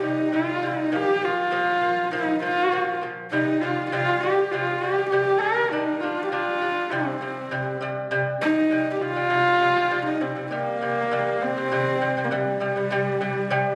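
A husky, nasal horsehead fiddle carries the melody with vibrato, portamento and an airy, soft-edged bow from the very start, while a delicate fingerpicked lute with gut double strings plays arpeggios beneath it, both up front. This windswept, vast Mongolian traditional piece moves at a steady 100 BPM in 4/4 in C yu mode, its harmony shifting between C, Bb and G, with a second section arriving at 8.1 seconds in this fragment cut from a longer work. A phone recording in a recital hall adds reverb, club reverb and compression to the duo.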